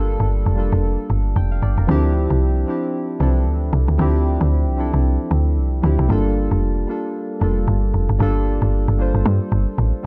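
Hypnotic and late-night in mood, this short amapiano excerpt moves at 114 BPM in 4/4, with a 58% swing on the sixteenths and tuning set slightly low at A4 = 437 Hz. Soft electric-piano-like synth keys carry the accompaniment from E3 to G5. Their round, gentle, detuned tone is built from triangle and sine waves, with a wave-folded edge, a filter sweep and a chorus shimmer. Beneath them, a woody log drum bass sits up front between F1 and G2, its punchy FM body topped with a noise layer, striking fast and decaying into a mellow tail. The harmony moves from Gm9 to Dm11 at 1.9 seconds, then returns to Gm9 at 6.1 seconds. The production is dark and warm, with little reverb, keeping both parts intimate and present.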